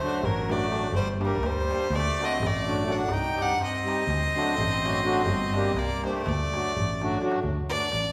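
A clear, airy-bowed fiddle sings the melody up front over a distant, lightly vibrato trumpet line, reedy slow-beating accordion and a crisp metal-shell darbuka in the background, with a round, punchy hollow-body electric bass joining at 0.2 seconds in this fiery, bittersweet Balkan wedding-band passage in 9/8, which moves between D, Gm and Cm in a reverberant concert hall, with a drum fill arriving at 7.1 seconds.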